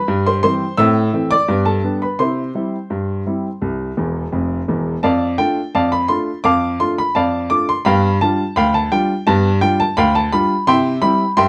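A warm, woody upright piano carries this jaunty ragtime excerpt alone, its smooth, vintage tone sitting up front with a short sustain and spanning from deep bass to bright treble. Moving at 85 BPM in a straight 2/4 in C major, the lively strain is stated and then repeated, with a brief piano fill around 4.0 seconds leading into the second pass. Close, detailed miking and a moderate studio reverb give the playing intimacy and a touch of room.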